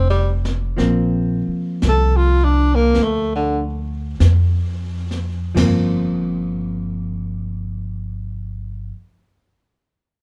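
Intimate, smoky jazz ballad in G minor at a slow, swung 42-62 BPM that slows down over its first section, where a breathy, subtone tenor saxophone with vibrato, scooped notes and plate reverb solos up front until 3.6 s over woody pizzicato upright bass, a clean, dark hollow-body electric guitar voicing a rootless Gm11 that settles to Gm7 at 5.6 s, and a softer vintage brush kit with dark cymbals, all heard from further back in a reverberant club room in this fragment of a longer piece.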